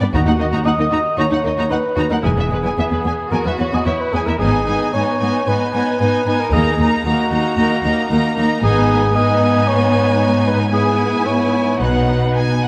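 A rich, up-front cello section anchors this heroic, soaring cinematic cue, its bowed bass line carrying a smooth, even vibrato through the full 12.7 seconds. Above it, a lush violin section sings the melody with a silky top, while a second violin line moves beneath it and a focused, close viola section fills in the accompaniment. A dark, distant cor anglais enters at 0.1 seconds with a punchy, roomy second line and light vibrato, alongside a soft-attacked, expressive double bass section that deepens the low end until 12.3 seconds. The harmony moves through D#m, E, G#m, back to D#m and G#m again before settling on B near the close, all at a steady 113 BPM in a straight 4/4. A moderate concert hall reverb gives the strings and reed a spacious symphonic glow in this short cut from a longer adventure score.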